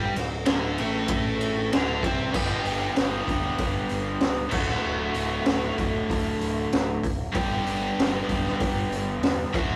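A straight 4/4 groove at 96 BPM drives this swaggering, rowdy garage rock excerpt, cut from a longer piece, with a raw drum kit entering at 0.2 s, its high-tuned snare, boomy kick, crash, ride and hi-hat sounding gritty and up front in a small room. A biting, dark overdriven guitar plays a double-tracked picked riff from D2 to G4, over a punchy fuzz bass that is bright and overdriven, moving from a D5 opening to a section that alternates G and D from 2.3 s. The rough rehearsal-room sound carries tube saturation and a moderate reverb of 0.6 s.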